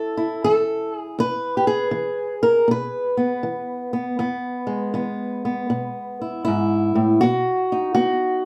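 A fingerpicked old ladder-braced acoustic guitar carries this short acoustic country blues fragment alone, its old strings giving a dark, woody, boxy tone with a gritty, laid-back mood. The playing has a relaxed swing in 4/4, moving from A to E at 1.2 seconds and reaching B at 7.2 seconds. A moderate studio ambience surrounds it, with the sound heard from further back in the room.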